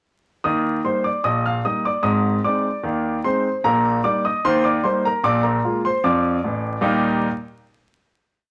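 A straight two-beat pulse drives this short, playful and cheerful ragtime piece for solo concert grand piano, whose stride bass reaches deep while the tune rings out in octaves, its polished, up-front tone carrying audible action noise and long sustain through moderate studio reverb and vinyl crackle until a final chord arrives at 6.8 seconds.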